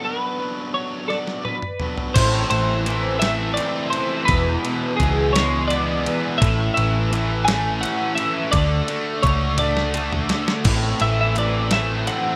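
In a straight 6/8 pulse, this upbeat, jangly indie rock excerpt opens with a bright, clean twelve-string electric guitar melody, colored by analog chorus and slapback echo, over a compressed fuzz guitar riff. A detuned 8-bit drum machine enters at 1.1 s with a fill, bringing a thumpy kick, medium-tuned snare, toms and cymbals with a tape-warm, sampler-style character. At 2.2 s a bright overdriven guitar riff with ensemble chorus and slapback echo arrives alongside a dark, round hollow-body short-scale bass and very quiet, crisp group handclaps, all set in light reverb within a rough home demo mix.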